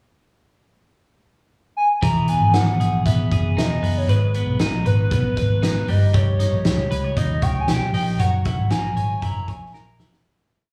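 Wistful and bittersweet, this short, complete piece of jangly indie pop moves at 117 BPM in a straight 4/4. A hollow, woody synth lead with a clarinet-like tone enters at 1.8 seconds, carrying a motif-based melody with vibrato, chorus and slapback and tape echo. From 2.0 seconds a clean, compressed twelve-string electric guitar plays a fingerpicked roll pattern through spring reverb, while a dark, foam-muted picked bass sits up front with a round, melodic line. A loose, roomy drum kit with a fat snare and punchy kick drives a brisk backbeat, its top end rolled off. After a brief pickup bar, the harmony moves from Emaj7 through G#m and D#7/G to F#7 as the music fades out from 8.2 seconds, with a drum fill closing it off. The whole performance has the feel of a live gig heard through a club's sound system, with light reverb and small-room ambience.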